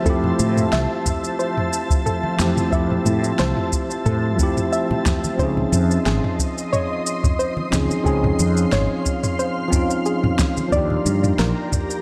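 A worn, slightly out-of-tune tine electric piano sits up front with delay, playing relaxed accompaniment over Fmaj7, Dbmaj9 and Ebmaj7 in this sunset chillout excerpt at 90 BPM with a gentle 16th-note swing. A shimmering, ethereal ambient pad with chorus holds sustained chords, while a soft, round, nasal pluck with chorus and delay arpeggiates quietly in the background. A dark, punchy fretless electric bass, a deep analog kick, a layered deep house kit with fat snare, shaker and toms, and close acoustic congas ground the groove, all wrapped in a lush hall reverb with a dark, warm production.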